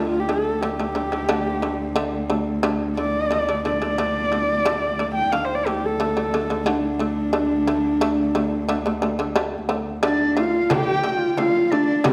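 Mongolian folk in a traditional vein, this passage cut from a longer piece moves at 89 BPM in a straight 4/4 and sits in D yu mode, with a vast, windswept mood. A dark, husky horsehead fiddle carries the melody up front, its woody bowed tone shaded by vibrato and portamento. Beneath it a mellow, fretless shamisen plays plectrum-plucked arpeggios with a percussive, buzzing edge, while a cello holds an intimate, airy sul tasto drone on a low D until 10.8 seconds. A large bamboo dizi adds a pure, expressive second line from 10.0 seconds, and a small, bright frame drum struck with hard hands joins at 10.7 seconds. The sound sits in a reverberant recital hall, with a faint mains hum underneath.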